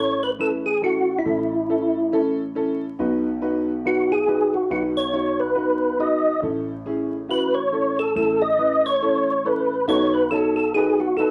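Vinyl crackle and a short, wet studio reverb frame this live-in-one-room soul excerpt, a danceable, uplifting groove with a swung feel. Up front, a mellow, round percussive tonewheel organ carries the melody, its key click and third harmonic percussion joined by chorus vibrato and a fast rotary speaker, and it takes a solo through the first 9.9 seconds. Beside it, a woody, boxy upright piano with long sustain supplies the accompaniment as the harmony moves between A and B before settling on B7.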